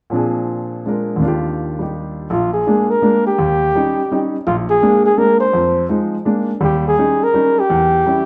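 Set in a dark production with a wet, large-studio reverb, this swinging jazz waltz at 166 BPM in Bb mixolydian opens with a natural-toned baby grand piano comping in short-sustained chords, before a mellow flugelhorn with a smooth top and vibrato enters up front at 2.3 seconds to carry the melody over shifting Bb7, Eb7 and Fm7 harmonies.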